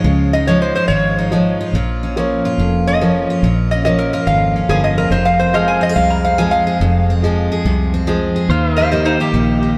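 This country excerpt moves at 142 BPM in 4/4 with a swung eighth-note feel, sitting in F minor with a dusty, brooding mood. A lap resonator guitar, played with a steel bar and fingerpicks, carries a metallic, nasal second line up front throughout, standing out as a solo across the whole passage. Beside it, a picked dreadnought steel-string acoustic with fresh strings gives a bright, full-bodied accompaniment, while a fingered electric bass, foam-muted and round, anchors the low end with a direct, amped tone. A boxy, mellow grand piano with long sustain sits in the background from 0.5 to 9.2 seconds, and a clean, twangy pedal steel guitar with volume swells enters at 5.5 seconds with sustained chords. The harmony moves from Dbadd9 through Bbm and Fm to Eb, all set in a moderate plate reverb that places the listener further back in the room.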